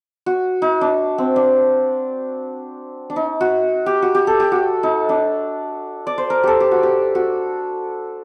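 Persian music in free time, this passionate, stately excerpt features a solo santur carrying the melody from 0.3 seconds, its hammered, shimmering tone ringing up front in a dry, close 1970s-style studio sound with light reverb and a small room ambience.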